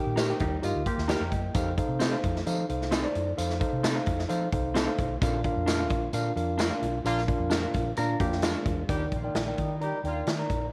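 Uptempo 1960s-style soul in Eb major at 131 BPM, this danceable, uplifting fragment is cut from a longer piece and moves in a straight 4/4. A clean tine electric piano sits up front through its built-in speakers, carrying the accompaniment from the opening across a broad range, while a round, foam-muted fingered electric bass adds a punchy, amped low end beneath it. A swinging big-band drum kit, natural and up front with a medium-tuned snare and punchy kick, drives the groove on hi-hat, kick and snare, joined by a jingly tambourine heard distant in the background. A slightly broken-up electric guitar through a small old amp places picked stabs with tape echo behind the band, and a compressed hollow-body jazz guitar plays a short riff near the start and again at 8.0 seconds. A tight horn section with a soft attack enters at 7.1 seconds with a jazz-style second line as the band hits an accent, and the harmony moves from Eb through F7 and Bb before settling on Ebmaj7 at 8.9 seconds, all in light reverb and small room ambience.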